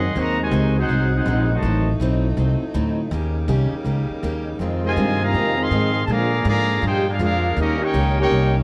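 A brassy, energetic big band swing excerpt opens with a clear trumpet section carrying the melody with light vibrato over a mellow trombone second line, both dropping out at 1.9 seconds and returning around 4.8 to 4.9 seconds, while a woody pizzicato upright bass sits up front and a full-bodied picked steel-string acoustic guitar and a tight saxophone section holding sustained chords stay in the background, all in a moderate large-studio reverb.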